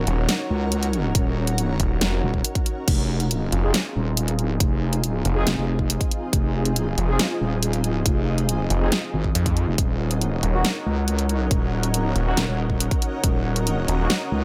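An excerpt of chaotic, menacing half-time wobble dubstep opens on a lush, detuned supersaw pad pumping with 12-bit grit, a blurred granular cloud pad and a heavy chorused wobble bass, quickly joined by a growling, distorted saw bass and a huge-snared dubstep kit, then a punchy kick from 1.1 s and mellow, tape-echoed brass stabs from 3.6 s, all over Ebm7 and Fm7 chords in a dry, up-front mix.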